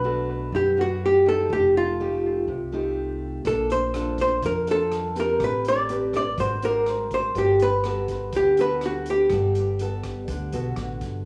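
Sophisticated and sunny, this bossa nova moves at 123 BPM in a straight 4/4 in G major, a short passage cut from a longer piece. An up-front archtop guitar, dark, clean and compressed with a hollow-body character, carries the picked melody from the start, its tone tinted by cassette tape, analog delay and plate reverb. Beneath it, a fingerpicked nylon-string guitar in classical style supplies warm accompaniment, also colored by cassette tape and plate reverb. A woody, thumpy pizzicato upright bass anchors the low end. At 3.5 seconds a vintage drum kit enters with hi-hat, tight kick and rim click, its sound small-roomed, rolled-off at the top and softened by cassette tape. The harmony glides through rich extended chords, from Bm7 to Bbmaj7 and on to a closing Gmaj9, all set in a damp, intimate booth ambience with the homespun grain of a cassette recording.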